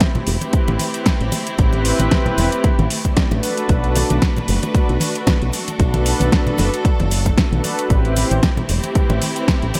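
A punchy, overdriven electronic kick sits up front at 114 BPM in 4/4, its 16ths swung at 56%, in this sensual, groovy nu-disco cut from a longer piece in A dorian. A layered pop drum kit adds a fat snare and metallic hats, overdriven and wrapped in gated reverb, while cabasa and congas tap along acoustically in the background. A fingered electric bass with an envelope filter enters at 0.3 seconds, sitting direct and up front in the low register. A smooth, airy analog pad built from detuned sawtooth and triangle tones with ring modulation and a noise layer swells in slowly, carrying chorus, delay and sidechain pumping. Distant, lush symphonic strings hold bowed chords with vibrato, also carrying sidechain pumping, as the harmony moves from Am7 to Bm7 and back to Am7 in a bright 1980s-style digital production with light reverb.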